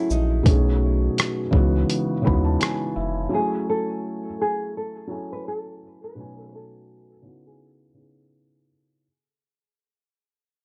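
A swung sixteenth-note groove from a gritty, compressed sampler-style kit, with its thumpy kick, hi-hat, rim click and shaker, drives this hazy, reflective lo-fi hip hop excerpt alongside a round sine sub bass with tube saturation, until both drop out by 3.3 seconds. A dark, felt-muted upright piano with audible action noise carries the extended chords and plays a fill from 1.9 seconds, while a thumb-plucked nylon-string guitar sings the melody through a low-pass filter and tape echo. The dry, lightly reverberant mix sits under a filter sweep and fades out across its nine seconds.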